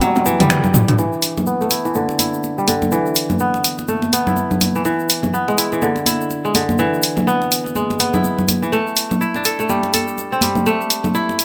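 A swung sixteenth-note groove at 124 BPM in 4/4 drives this afro house excerpt in E minor, opening with a drum fill in its first second before settling into an earthy pulse. The deep house drum kit sits up front with a tape-warm, layered electronic sound built from finger snaps, hi-hat and toms, re-recorded in a small room. High-tuned congas with thin skins are played with hard hands and sound compressed and saturated, while a grainy egg shaker ticks close and dry in the background. Alongside them, an up-front acoustic kora plays fingerpicked, ringing, crisp arpeggios between G2 and A4, shaped by a low-pass filter and delay, with a filter sweep on it from 1.0 seconds onward. The harmony moves from C to E7 and on to Am, and a moderate plate reverb gives the mix a polished studio sheen.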